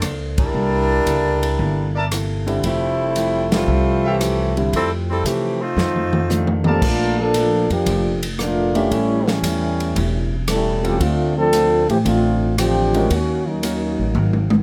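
A tight, close-miked saxophone section carries the melody in this joyful big band swing at 115 BPM in F major over a woody pizzicato upright bass, a punchy swinging drum kit and a clean, picked hollow-body electric guitar in the background, joined by clear trumpet stabs from 2.0 s and a natural baby grand piano from 2.5 s, before an up-front trombone section takes a solo from 6.8 s, all set in a moderate club reverb.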